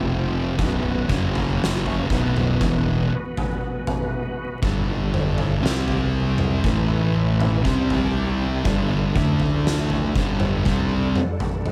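Sludgy and brooding, this short cut from a longer stoner and doom metal piece moves at a heavy, straight 4/4 crawl. Two fuzz-soaked electric guitars carry the picked, distorted riff from the opening second, one dark and set back in the mix while the other sits up front with a warmer tone. Beneath them, a fingered electric bass adds an overdriven, round low end in the background, and a reedy, bright tonewheel organ holds clean sustained chords with chorus vibrato, audible key click and a slow rotary speaker. An oversized, low-tuned acoustic drum kit enters at 0.6 seconds, placed up front with a punchy kick, a fat snare and toms sounding in a bright stone room that pumps around the hits. Light reverb and a layer of vinyl crackle give the whole passage a worn, smoky feel as the chords shift through F5, B5, F#5, G5, C5, A5 and D5.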